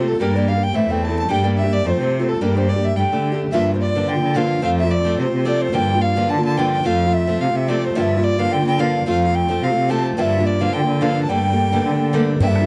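A fingerpicked, boxy steel-string guitar, an up-front cello with soft-attack portamento and an earthy, biting fiddle on the second line open this driving, dark and lively Celtic reel at 216 BPM in G dorian, joined at once by a distant, hollow wooden flute carrying the melody over a Gm–F harmony with a light swing, before a boomy bodhran sounds briefly at 12.4 seconds in a dry, close 1970s-style studio sound.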